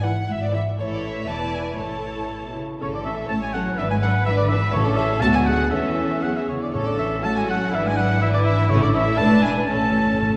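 Bowed chamber strings open this graceful, spirited classical-period movement for symphony orchestra, a quick 2/4 in A major at 122 BPM taken with a rubato feel and cut from a longer piece. The first violins carry the melody with soft-attacked, expressive vibrato, while the second violins add a focused line with a smooth top, the violas supply even, distant accompaniment, and the rich cellos join the warm double basses on the bass line. At 2.8 seconds a mellow, up-front cor anglais enters with a second line in a light classical vibrato, sitting in the same register as the violin melody. Timpani played with soft mallets add a round, close tone on A from 4.8 seconds and close the passage with a fill at 9.7 seconds. The harmony moves mostly between A and E7, with brief turns to B minor over D and A over E. A long, wet concert hall reverb places the listener further back in the room.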